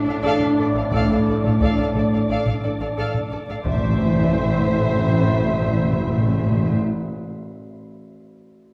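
Hard-mallet timpani sit up front from 3.6 s on an A, striking articulate blows in this eerie, uneasy suspense cue in A minor at 89 BPM, cut from a longer piece. Veiled, con sordino strings play throughout: a violin melody with a very quiet second violin line, dark viola accompaniment, and cello and a lush double bass holding the low end. Alongside them sit clear trombones, mellow French horns and an airy, wind-like tuned noise layer in sustained chords, with dry taiko in the background until 4.9 s, all set in a reverberant hall as Dm/A moves to Amadd9 at 3.7 s.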